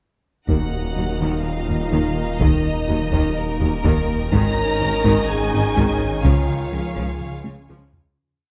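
A cinematic hybrid of orchestral and electronic film score in Eb minor, this short, complete piece moves at 125 BPM in a straight 4/4 with a vast, relentless mood, passing from Eb minor through Absus4 to Db. A lush first violin section carries the melody with vibrato, doubling the tune at the octave, while a second violin section holds smooth, sustained chords above a background viola section that plays a driving rhythmic ostinato. Mellow French horns and clear, vintage-toned trombones sit in the background with sustained chords, and a dark, harp-like synth pluck ripples through pulsing arpeggios, colored by chorus and digital delay. The low end stacks a distant, very quiet cello section on a driving bass ostinato, double basses and a roomy solo tuba doubling the bass line, and an aggressive, growling distorted sawtooth bass holding sustained low notes. A close, dry taiko ensemble with heavy sticks pounds a big drum ostinato, finishing with a fill from 7.5 seconds as the whole piece fades out from 6.2 seconds into a moderate scoring-stage reverb.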